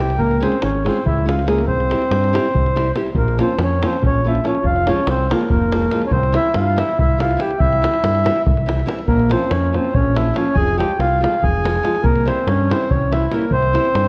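A mellow, reedy accordion carries the melody up front with a tape echo, while a mellow classical-style clarinet plays a second line beneath it, in this fiery, restless Balkan wedding band excerpt in C phrygian dominant, moving at 284 BPM in 7/8. A woody, fingerpicked nylon-string guitar with old strings fills in the accompaniment, a growling overdriven fingered electric bass drives the low end, and a tight, close davul enters at 0.1 seconds. The chords cycle through Db, C, Bbm and Fm. Everything sits in a moderate recital hall reverb on worn, warbling cassette tape with a wavering pitch drift.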